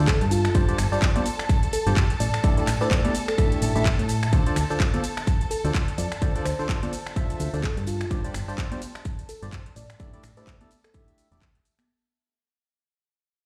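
This soulful, energetic piano house excerpt at 127 BPM with a swung 16th feel opens on a drop, with distant, vibrato-rich chamber violins holding sustained chords, a hollow, percussive organ stab riff coated in lush chorus and tape echo, and a round, dark FM bass, all three pumping against the sidechain. A punchy, tape-warm electronic kick sits up front beside a house kit of metallic hats, snaps, handclaps, ride and shaker, while very quiet tambourine and congas add acoustic colour and a bell-like, sparkling FM electric piano carries the melody through chorus and tape echo. Chords move from G7sus4 and A7sus4 to Dm7 under a large studio reverb that sounds like a big system in a bare room, and a fade-out begins at 4.3 seconds and runs to the close at 11.9 seconds.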